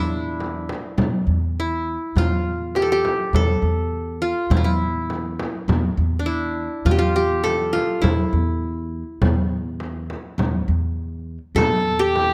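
This Arabic maqam ensemble piece, cut from a longer work, has a melancholic, hypnotic mood in a straight four-beat metre. The qanun carries the melody from the first moment, its plectrum-plucked triple strings sounding bright-edged and up front. Beneath it, a pizzicato upright bass holds a low, woody foundation, and at 0.4 seconds a small frame drum joins with a bright acoustic sound. At 11.6 seconds a single bowed violin enters with a second line, its gut-string tone reedy and nasal with a light vibrato in period style. Close, detailed microphones and a light reverb keep the ensemble intimate and clear.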